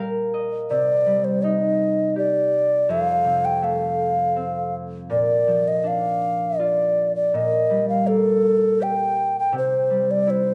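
Innocent and gentle, this children's lullaby excerpt in a straight three-beat metre opens with a brief mellow, ringing fingerpicked concert harp fill before a breathy, round clay ocarina enters up front at 0.7 seconds with a straight-toned, tongued melody over the harp's accompaniment, all set in a moderate recital hall reverb.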